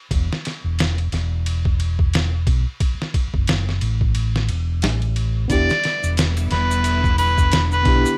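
Trip hop at 89 BPM in E minor with a brooding, dark mood and a swung 16th-note feel. From 0.1 seconds, a punchy, round fingered electric bass sits up front beside a gritty, pitched-down sampler-style drum kit with a thumpy kick and tape-warm compression, moving through E5, F#m and A5. At 5.5 seconds the harmony turns to Em7 as a mellow harmonica with scooped notes and vintage 12-bit grit takes the melody, joined by a clean tine electric piano with tremolo, a rich, biting string section in light vibrato and background maracas and triangle, all in a dry, rough home-demo mix that is cut from a longer piece.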